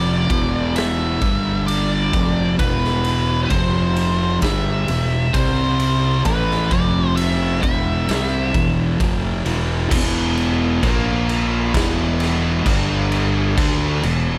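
A gritty, saturated garage drum kit with a punchy kick and bright stone-room pump drives this ominous, brooding stoner-doom excerpt, where a dark octave-fuzz lead guitar colored by wah and tape echo sings until 9.0 seconds over two thick fuzz guitar riffs, one warm and one shadowy, and a growly overdriven fingered bass, before a bright, double-tracked high-gain guitar takes up the riff at 9.9 seconds.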